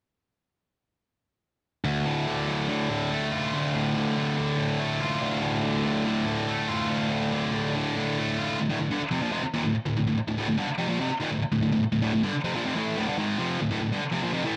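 A bright, high-gain electric guitar enters alone at 1.8 seconds and carries this heavy, dark metal fragment to 14.6 seconds, its picked, double-tracked distortion sitting up front in a dry, warm mix and moving into a new section at 8.6 seconds.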